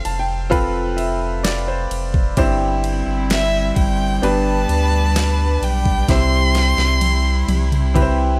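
A clear, intimate concert grand piano opens this tender, heartfelt pop ballad excerpt with a fill, its action noise audible and its deep bass up front, while a solo violin carries the melody from the first moment with vibrato, soft attack and expressive portamento. At a slow 65 BPM in straight 4/4 and C major, a round sine sub bass with a fast attack sits forward in the mix, and a smooth, produced R&B drum kit adds a knocking kick, deep snare, toms and ride cymbal with a tape-warm character. At 2.4 seconds a studio string section enters beneath, holding sustained chords with light vibrato and a reedy, gut-string, period-style tone. The harmony moves from F through C/G and G to C, and a drum fill arrives at 6.1 seconds as the passage heads toward its close. A small room ambience surrounds the parts.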